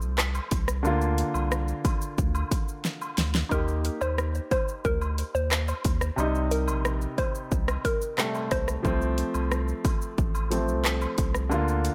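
Dancehall at 90 BPM in a straight 4/4, this short cut from a longer piece feels tough and hypnotic. An electronic pop drum kit sits up front with a punchy kick, fat snare and bright hats, layered with handclaps, rim clicks and shaker, and a drum fill lands at 2.8 seconds. Underneath, a round sine sub bass holds the low end with fast-attack, sustained notes, while a polished grand piano plays chords moving from F/C through Bb, Eb and Cm before returning to F/C. Woodblock and cabasa add a distant, roomy acoustic texture. From 3.5 to 8.6 seconds a hollow, bouncy square-wave pluck carries a short, detuned melody with a dark, decaying filter snap, treated with chorus and delay, all set in light reverb.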